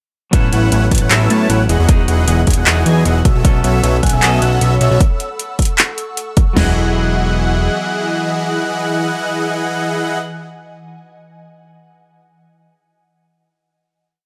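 Lush and euphoric, this short half-time future bass piece rides a punchy, overdriven pop drum kit with metallic hats and handclaps over a fat, saturated analog bass, while huge detuned supersaw chords pulse under sidechain pumping and digital delay, a bright clean electric guitar holds rootless chords with syncopated pushes, an ethereal pad and a soft, dreamy arpeggiated lead with cassette-tape colour shimmer in the background, a dark, ringing vibraphone slips in short answering phrases at 4.0 seconds, and the drums drop away at 6.7 seconds to leave a final Emaj9 chord hanging.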